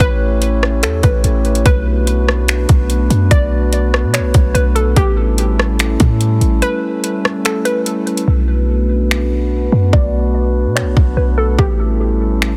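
A half-time 4/4 trap drum kit at 145 BPM, with a hard-clipped kick, metallic hats, finger snaps and rim clicks up front, drives this melancholic, ethereal cloud-rap excerpt in B minor, where a deep, boomy sine 808 bass sits alongside pure glass harmonica chords pumping under a low-pass filter and a warbling, detuned lo-fi pluck melody carried by chorus and tape echo over A7 and Bm7, set in a heavily compressed radio-style ambience, with a break from 6.6 to 8.3 seconds.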